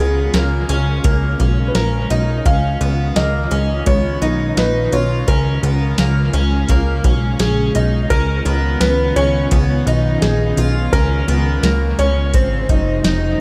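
A felt-muted upright piano sings a soft, intimate melody through dub echo and shimmer reverb over a detuned, warbling pad in the background, octave-doubled twelve-string guitar arpeggios and a punchy, saturated analog bass, while an overdriven vintage rhythm box with a deep kick and metallic hats joins at 0.3 seconds in this blissful, ethereal dream pop fragment, its echo-heavy mix drifting through a shift of chords near 10.9 seconds.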